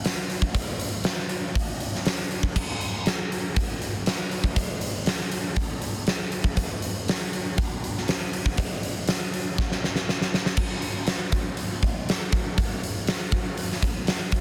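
A huge arena drum kit carries this short rock cut on its own, its fat snare and punchy kick sitting up front, with soft clipping adding grit to the kick. Bright crash and hi-hat cymbals ring over a pumping room sound that gives the acoustic kit a hall-sized presence, even though the recording itself carries little reverb. The groove runs at 120 BPM in a straight 4/4, and despite the weight of the drums the mood leans wistful and hazy. A drum fill from 9.6 to 10.6 seconds leads into a new section that carries on until the cut ends at 14.4 seconds. The dense, heavily limited modern master keeps the whole kit packed tight and forceful.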